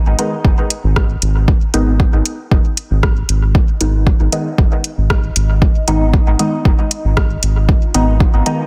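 A steady, straight 4/4 pulse at 116 BPM drives this meditative, deep dub techno excerpt in G# dorian, anchored by an overdriven, up-front electronic kick and a round, dark analog bass pumping under sidechain, while a soft vintage rhythm box adds metallic hi-hats and rim clicks trailed by dub echo. Muted, detuned filtered chord stabs on G#m pulse through phaser, sidechain pumping and dub echo, and from 3.5 s a bubbling stepped-filter texture with resonant random filter steps, chorus and its own reverb sits in the background. The sound is dry, dense and heavily limited.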